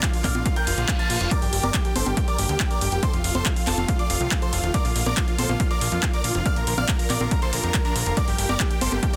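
A huge, detuned supersaw lead carries the euphoric melody of this uplifting trance passage, pumping against the beat through a digital delay while a brilliant concert grand piano plays a second line above it. Beneath them, a lush, airy unison pad holds sustained chords in the background with chorus, a plucky sawtooth bass enters at 0.2 seconds, and an overdriven, punchy kick sits up front beside a dry analog drum machine playing congas, handclaps and hi-hat. A reverse cymbal sounds from 0.6 seconds to 1.3 seconds, and the chords move from Bb through Gm and F, all in a dense, heavily limited modern master.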